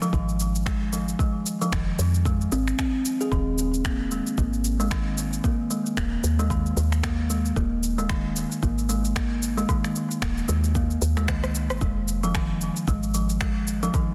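Mellow, fingertip-plucked kalimba arpeggios open this earthy, mystical organic downtempo excerpt, sitting up front with a digital delay, alongside a layered electronic shaker, finger snaps and rim click given an overdriven edge and soft clipping on the snare. A soft, round FM bass with a woody, dark tone and tube saturation joins with a deep electronic kick, the groove swinging gently over a Fm7 to Ebsus4 progression. A brief drum fill at 11.3 seconds leads back to Fm7, all set in light reverb under a dense, heavily limited modern master.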